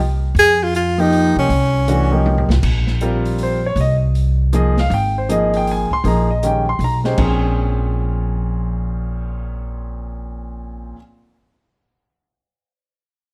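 A swinging 3/4 pulse at 158 BPM drives this intense, searching modal jazz fragment, with a woody pizzicato upright bass sitting up front beneath a smooth, open drum kit of dark cymbals, medium-tuned snare and boomy kick that adds a fill from 2.2 to 2.6 seconds. A clear, close-miked tenor saxophone states a brief vibrato-laced line with scooped notes before stepping out at 2.5 seconds, while an intimate concert grand piano, present and polished with deep bass, long sustain and audible action noise, enters at 1.0 seconds and carries the harmony through F7, Fm7/Bb and Bbm9 alongside the bass and drums. Light reverb gives the short cut from a longer piece a touch of air.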